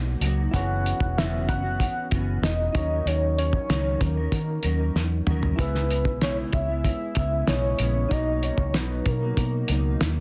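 A dense, heavily limited modern mix carries this hazy, lonely bedroom-pop fragment at 95 BPM in C# dorian, cut from a longer piece and moving through Bmaj7, F#7sus4, D#m7 and C#m7. Up front, a cloth-damped, muffled drum kit with a fat snare and tight kick enters at 0.2 seconds beside a round, foam-muted vintage bass, while a dark, clean electric guitar drifts with ensemble chorus and warbly pitch and soft electric-piano-like synth keys sit in the background under chorus and cassette-tape colour. A full, octave-layered synth lead with tremolo, analog chorus and tape echo carries the melody from 0.5 to 9.7 seconds, and a drum fill arrives at 5.0 seconds.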